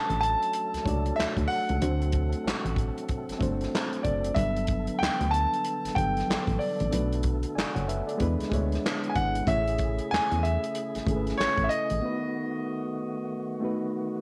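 R&B with a neo-soul lean, this sultry, late-night excerpt moves at 94 BPM in 4/4 with a swung sixteenth-note feel, as a clear, up-front concert grand piano carries the melody with slapback echo over a reedy electric piano and a tonewheel organ holding sustained chords through a slow rotary speaker with chorus vibrato and key click. A punchy, round FM bass and a soul drum kit with handclaps, hi-hat, kick and snare, distant and roomy with a rolled-off top, drive the groove from 0.1 s until 12.0 s, when they stop and the keyboards carry a brief break to the end. The chords travel from Dmaj7 through Gmaj7, Bm7 and E7 to Amaj7 before landing on B7, all set in a moderate echo-chamber reverb with small-room ambience.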